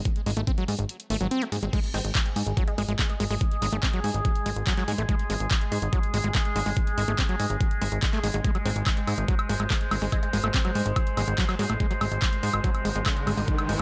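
Hypnotic and intense, this psychedelic trance excerpt drives at 143 BPM in a straight 4/4, resting on a single G# chord, tuned slightly low to A4 = 438 Hz. An up-front, overdriven electronic kick with a knocking punch anchors the groove, dropping out briefly between 0.9 and 1.7 seconds, while a layered drum kit adds bright hi-hats, handclaps, crash cymbal and woodblock with its own overdrive and small-room character. Beneath it, a punchy, funky analog bass plucks from G#1 to G#2, and a squelchy, gritty acid bass riff, distorted and pumping, repeats through a digital delay. From 2.3 seconds a nasal drone of sustained chords fades in with moving overtones, chorus and reverb, breathing with the sidechain. A juicy, ring-modulated blip pluck flickers in the background through a phaser and delay, and a riser creeps in from 12.4 seconds as the passage pushes onward, all set in light reverb.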